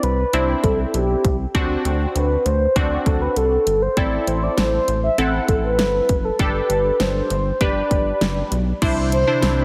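A straight 4/4 pulse at 99 BPM drives this bright, nostalgic synth-pop excerpt in D mixolydian, where a punchy electronic drum kit with a fat snare and a bouncy, hollow square bass sit up front beneath a funky, detuned polysynth comp and a mellow, horn-like synth lead that carries the melody with vibrato, chorus and digital delay over Cadd9, D7, Am and Gsus2, until a full, warbling vintage string machine enters at 8.8 s, all set in a moderate hall reverb with a heavily compressed radio sound.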